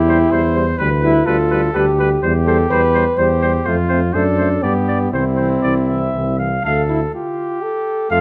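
Classical brass quintet music in a stately 3/4 at 125 BPM in C major, with a clear, vintage-toned trumpet carrying the melody over a close-miked flugelhorn second line and a soft-attacked French horn accompaniment. Beneath them, a warm tuba sits up front on the bass while a distant, very quiet trombone fills in the harmony, all moving through a cadence toward C before the passage turns to D minor at 6.7 seconds. The ensemble is captured with close, detailed microphones in a recital hall whose moderate reverb lends a gentle bloom to this brief cut from a longer piece.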